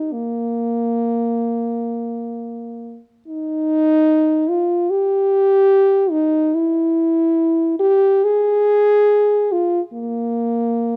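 Close, detailed microphones and a light reverb frame this short classical passage, cut from a longer piece, for unaccompanied French horn in free time. The dark horn sits up front as the only voice, its soft attack and smooth top carrying an expressive, yearning and lonely line that moves between Bb3 and Ab4 for the full 11.0 seconds.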